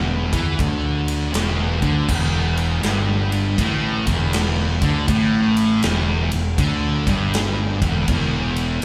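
A band plays live together in one room under a light reverb, with guitar, bass and drums all placed up front. This short excerpt of stoner and doom metal sits on a single E minor chord at a slow 80 BPM in 4/4, with a swung eighth-note feel and a heavy, ominous mood. The fuzz guitar carries the riff between E2 and E3, its picked, double-tracked tone thick with distortion. Beneath it, a fingered electric bass growls in the low register with overdrive. The big acoustic rock kit comes in at 0.3 seconds, adding a punchy kick, a medium-tuned snare, a ride and bright crash cymbals that ring out in a big room.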